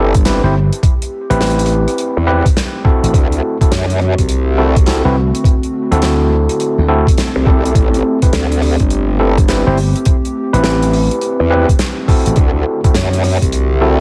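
Overdriven electric piano stabs, gritty through a combo amp and trailed by tape echo, open this swaggering, playful glitch hop excerpt alongside a growling, wobbling, formant-filtered bass. They are soon joined by a thumpy, pitched-down kick up front and a gated 80s kit of hi-hat, rim click and snare in a bright stone room. Punchy slap bass plays from 0.4 s to 12.4 s, and a dark, warbling lo-fi pad sustains Am7 and D7 chords in the background, all with a swung feel in a small room.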